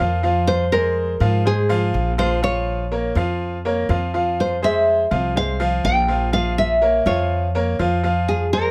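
Cuban son and guajira at 123 BPM in 4/4, this short, danceable cut from a longer piece moves between F minor and B-flat minor with a warm, close, dry sound. A fingerpicked nylon-string guitar carries the melody up front, while a clear, boxy grand piano with short sustain plays arpeggios beneath it. A woody, thumpy pizzicato upright bass on gut strings anchors the low end throughout all 8.7 seconds.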